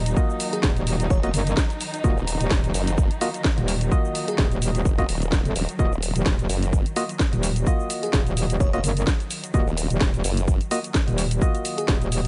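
A metallic, saturated wobble bass drives this gritty, aggressive bass house excerpt at 128 BPM in Eb minor, sitting up front with chorus and sidechain pumping from the very start. From 1.1 s a second wobble bass joins it, this one built from detuned sawtooth tones pushed through a formant filter, and it drops out at 10.6 s. A punchy electronic kick and a house kit of cracking snare, hi-hat and cabasa carry a swung 4/4 groove, both re-recorded in a small room. Hollow, organ-like stabs punctuate the mix with chorus and digital delay. In the background, a bell-like FM electric piano adds brief sparkling phrases with tremolo, while a lush symphonic string section holds dark, bowed chords on Ebmadd9 with vintage 12-bit sampler grit. The whole passage sits in a digital ambience and comes from a longer piece.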